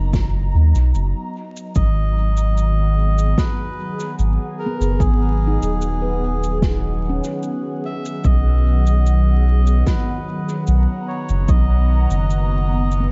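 This dark, crackling recording sits in a small room, with its top end rolled off above 7.7 kHz, giving the ambient dub fragment a meditative, deep character. A round sub bass, sustained and up front with tube saturation, anchors the opening alongside an airy, breathy pad whose detuned layers drift through chorus and phaser over chords moving from Bmaj7 to G#m7 and back to Bmaj7. A punchy, overdriven electronic kick carries the straight 4/4 pulse until 11.7 s, while a shaker and fat snare sit low in the mix, trailing dub echo. A reedy, nasal melodica takes the melody from 1.8 s, its smooth line also soaked in echo. At 4.7 s a mellow, ringing handpan adds soft arpeggios that carry their own dub echo through to the end.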